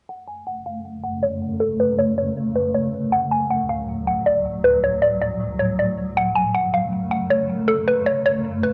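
A woody, round mallet-like synth pluck carries the melody from 0.1 s, its fast attack and decaying FM tone touched by a noise layer and colored with chorus, phaser, a low-pass filter and plate reverb. This is a dark, eerie hip hop passage at 158 BPM in 4/4 with a half-time feel, set in F# minor and cut from a longer piece. From 0.7 s a granular cloud pad holds sustained chords beneath it, its blurred, detuned unison triangle tone evolving through a moving notch with a slow attack, long release and its own built-in reverb. The harmony moves from F#m to D at 3.1 s and returns to F#m at 6.2 s, while a filter sweep runs across the whole passage. Both parts sit up front in a moderate studio room, and the recording has a dry, gritty hardware character with a dulled top end.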